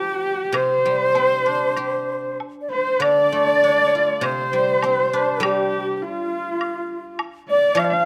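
A bright, reedy bamboo xiao carries the melody up front, its airy tongued notes shaded with vibrato. Alongside it, also up front, a husky bowed horsehead fiddle sings an expressive second line with vibrato and portamento, while a silvery, ringing guzheng played with fingerpicks sits lower as accompaniment. This graceful, pastoral piece of Chinese traditional chamber music flows in a free rubato feel, with a close, dry woodblock entering at 0.5 seconds and stopping at 7.9 seconds, all heard through detailed close microphones and light reverb in a short cut from a longer work.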